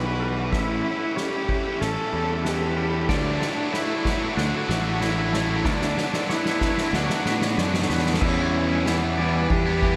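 A straight 4/4 pulse at 94 BPM drives this cinematic, euphoric post-rock passage in D major, cut from a longer piece, where a distant soft-mallet drum kit with a punchy kick and medium-tuned snare joins at 0.2 s and plays a fill through an extended build-up. An up-front fuzz bass, an overdriven guitar riff in the background and two very quiet, twangy clean guitars, one picked and one fingered, circle arpeggios under a woody, bowed cello melody with vibrato and delay, moving from Em7 and A7 through Dadd9 and Bm/D. A bright, tight distorted guitar riff enters at 3.1 s, and the whole mix is soaked in a dreamy cathedral reverb.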